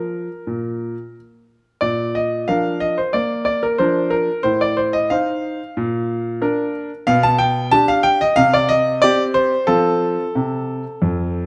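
A clear, up-front concert grand piano plays solo through this playful, cheerful classical-period sonatina in a straight 4/4, its smooth, vintage tone reaching from a deep bass at F2 up to A5 over chords moving from Bb through F7/A, G/B and C5 before settling on F at 9.7 seconds, all caught by close, detailed microphones in a moderate recital hall reverb.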